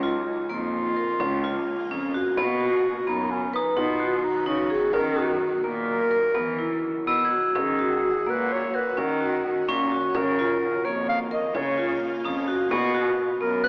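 Heard through a thin AM-radio filter and a moderate concert-hall reverb, this hypnotic, pensive stretch of contemporary chamber music in 11/8 is cut from a longer piece. A soft-attacked, classical solo clarinet carries the melody over ringing, up-front vibraphone arpeggios played with hard mallets and the motor off, while a distant bowed cello supplies an expressive bass line with vibrato and portamento. A bright, blurred granular cloud pad holds sustained chords, a small frame drum played with soft hands sits close and dry in the background from 0.3 seconds, and a sparkling, bell-like glockenspiel adds texture from 3.6 seconds.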